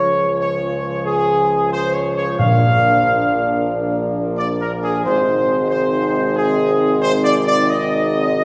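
In a steady, straight 4/4, this majestic and solemn classical ceremonial fanfare fragment sets a mellow, close, up-front trumpet section's melody with light vibrato and soft attacks over tight, warm French horn chords, distant, roomy trombones in the background and a clear tuba bass with light vibrato, while round, soft-mallet timpani on calf heads sound only from 2.4 to 3.4 seconds as the harmony moves from Db to Bb to Ab in a wet church reverb.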